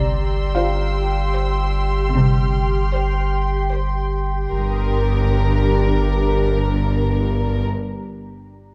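A deep, round sine sub bass sits up front on a low G drone throughout this eerie fragment of a suspense film score, which moves at 76 BPM in 3/4 in G dorian. Beneath a glassy, ethereal FM pad carrying sustained chords with ensemble chorus and its own built-in reverb, distant symphonic double basses and lush cellos hold the bass line with smooth, even bowing, the cellos rich with vibrato. From 0.6 s a focused, close studio violin section takes the melody in a narrow middle register, its tone full and vibrato-laden. High above, a dark, woody symphonic violin section adds a faint texture, while a clear but worn grand piano lingers in the background until 4.5 s, where the harmony shifts from C over G to G minor. A moderate scoring stage reverb and a dark production give the mysterious piece its shadowy, enveloping atmosphere.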